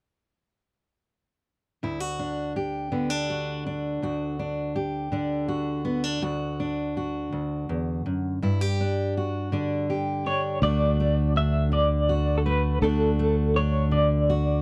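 Indie folk in a lilting 6/8, this short excerpt from a longer piece carries a hopeful, warm mood and builds its arrangement gradually. A fingerpicked steel-string acoustic guitar opens alone at 1.8 seconds, its full auditorium-sized body sitting close and up front as it moves through D, Dadd9 and G5 chords. At 10.3 seconds an electric guitar played through a small old amp takes up the melody in a higher register, its slightly broken-up, lo-fi, compressed tone shimmering with tremolo. A fingered electric bass joins at 10.6 seconds, punchy and direct on a low D, as the music settles back onto the D chord for the new section. The sound is dry and intimate, like a close 1970s-style studio recording.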